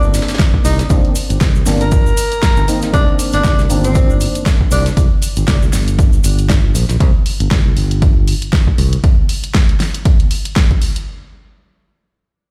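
A punchy, overdriven electronic kick sits up front in this deep, moody deep house excerpt, alongside a growly fingered electric bass with sidechain pumping, an overdriven deep house kit with a fat snare, a very quiet brushed acoustic kit, a grainy tube shaker in the background, hollow chorused organ stabs with tape echo, and a breathy, distant tenor saxophone melody with scooped notes that, like the stabs, stops at 4.9 seconds, the whole mix played back on a big sound system in a bare stone room.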